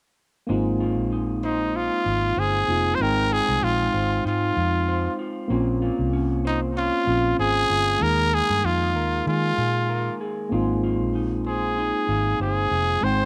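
Laid-back and sunny, this indie pop and bedroom pop piece moves at 96 BPM in 4/4 with a gentle sixteenth-note swing, centred in Ab major. From 0.5 seconds a dark, round, foam-muted electric bass sits up front with a punchy, amped tone, alongside a mellow, clean tine electric piano and an electric guitar picked through a small old amp that sounds slightly broken-up, coloured by vibrato and slapback echo. At 1.4 seconds a growling trumpet takes the solo melody, brilliant and raspy with gritty scooped pitches, a light vibrato and its own slapback echo, close-miked and placed prominently ahead of the band. The chords drift from Ab6 through Fm7/Ab, Bbmadd9 and Ebsus4 before returning to Ab6, and all four parts play through to 13.3 seconds. The sound is dry, captured outdoors with little reverb, and the clip is cut from a longer piece.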